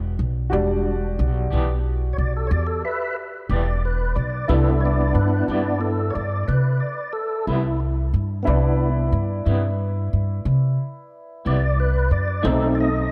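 Slow, mournful blues in a straight 12/8, where a fat, lightly overdriven tonewheel organ with chorus vibrato, key click and slow rotary speaker takes the soulful solo up front from 0.5 seconds, over a woody, thumpy pizzicato upright bass on gut strings, a worn, slightly detuned upright piano and a bright, twangy, slightly broken-up electric guitar with tremolo entering at 1.5 seconds, all moving from Em7 to Cmaj7 and settling on B7b9 in a dreamy, reverb-soaked hall.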